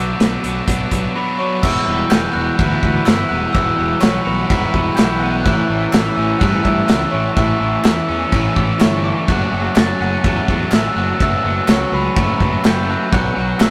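Indie rock with a moody, cool feel, this cut from a longer piece opens with a soft, bell-like glockenspiel melody played with rubber mallets and touched with analog delay, set over a bright, overdriven guitar riff and a clean, compressed twelve-string electric guitar sitting in the background. A dark, round fuzz bass with punchy overdrive anchors the low end, while a loose acoustic drum kit, up front with a tight kick, a medium-tuned snare, hi-hat and crash, enters at 0.2 seconds in a pumping small room. A very quiet FM synth chime adds an inharmonic, chorused second line from 1.2 seconds, and a flute-like tonewheel organ with key click and slow rotary speaker holds soft sustained chords from 1.6 seconds. Crisp group handclaps join at 2.1 seconds, barely audible beneath the band. The harmony moves from Bmadd9 to Emadd9, then A and F#m, and the whole take carries the rough, tube-saturated sound of a rehearsal room with a moderate stone reverb.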